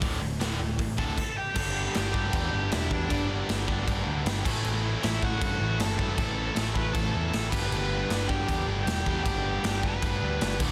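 A dry, dense and heavily limited mix carries this rebellious, upbeat punk rock excerpt at 156 BPM in a straight 4/4, with a raw garage drum kit up front, its boomy kick, crash, hi-hat and snare sounding saturated and gritty in a bright stone room that pumps. A growly, punchy overdriven picked bass and two picked rhythm guitars, one a hollow-body overdriven semi-hollow and the other a tight distorted electric set back in the background, drive the riff from a D5 opening into a G, A and G progression from 1.6 s. A high-gain lead guitar enters at 1.0 s with a distorted melody coloured by tape echo.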